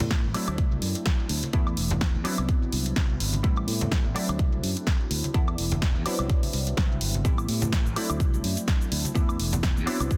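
A punchy, layered electronic kick drum sits up front through this short cut from a longer filtered disco house track, with a tape-warm body and a small-room character. The mood is nostalgic and sensual, carried by a funky polysynth comp of detuned sawtooth and sine tones with ring modulation, wave-folding and a filter sweep, its mellow, sustained chords colored by chorus, phaser, a cassette-tape grain, a low-pass filter and sidechain pumping. Beneath it, a bright, growly fingered electric bass plays direct and low, also filtered and sidechain-pumped. A dry analog drum machine adds an overdriven snare, hi-hat, cabasa and woodblock, with studio reverb and pumping on the hats, cymbals and percussion, while ringing congas and maracas played with hard hands sit close yet in the background. The swung groove cycles through D9, E7sus4, Cmaj9#11 and Am9 over a dense, heavily limited modern master with a digital ambience.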